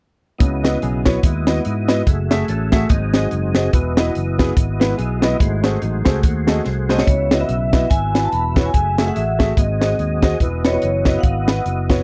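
Uptempo gospel in C# minor at 144 BPM with a swung feel, soulful and solemn, cut from a longer piece and captured as a dry, close 1970s-style studio recording. Crisp fusion drums with a high-tuned snare and tight kick sit up front beside a punchy fingered electric bass, while a concert grand piano with deep bass and long sustain comps and a tonewheel organ holds chords through a fast rotary speaker with chorus vibrato and key click. A dark, clean electric guitar with phaser plays a background second line until 6.9 s, when, during a drum fill, a metallic, ringing vibraphone takes the melody over chords moving from C#m11 through F#m9 and G#7.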